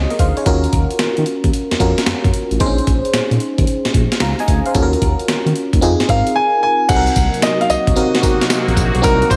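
A bouncy 16th-note swing at 112 BPM in 4/4 drives this confident new jack swing R&B excerpt, built on a gritty, compressed, sampler-style breakbeat kit with a thumpy kick, medium-tuned snare, hi-hat, tambourine and crash cymbal, sitting up front and bathed in gated reverb from a large room. Beneath it, a smooth, dark synth bass blends sawtooth and square tones with vibrato, while a glassy, bell-like FM electric piano with a noisy edge and chorus supplies the accompaniment up front. The harmony moves through Ebm7, Bbm11 and Fm7 before shifting to Cm7b5 at 6.9 seconds. A clear, natural concert grand piano with deep bass takes the melody from 6.1 seconds, and an evolving, detuned sawtooth pad with a filter swell and chorus adds sustained chords from 7.3 seconds. Light digital ambience gives the mix a polished, slightly airy finish.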